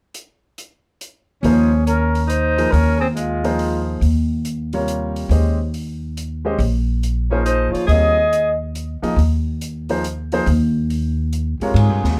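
A breathy, whispered trumpet with vibrato and scooped notes floats distantly in plate reverb over a clear alto saxophone second line, a clear concert grand piano with deep bass, a woody, growly upright bass up front and a dark, smooth jazz kit of hi-hat, ride and high-tuned snare, shaping a hypnotic, open modal jazz waltz that swings over a held suspended chord in this short excerpt.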